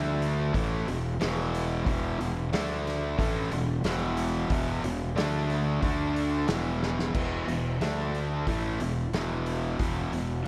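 Blues rock in a power-trio and southern rock vein, this gritty, swaggering excerpt rides a thick, double-tracked fuzz guitar riff, bright and up front, with distortion and slapback echo, moving between D5 and E5 chords. A growly, overdriven fingered electric bass fills the low end, while a vintage acoustic drum kit with a punchy kick, medium-tuned snare, dark cymbals and a rolled-off top pumps in its small room, adding a fill at 6.8 s before the next section begins at 7.2 s. A lush hall reverb gives the recording a big arena sound.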